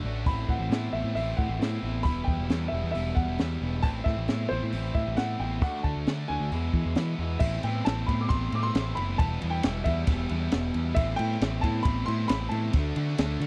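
Bittersweet, cool indie rock, cut from a longer piece, where a crunchy overdriven guitar and a twangy, slightly broken-up guitar through a small old amp with subtle chorus play riffs over a growling, up-front picked bass from the first moment, joined at 0.3 seconds by a woody, slightly detuned upright piano melody with tape echo and a dark, smooth cocktail drum kit with a high-tuned snare and punchy kick, all captured in a dry, close 1970s-style studio sound.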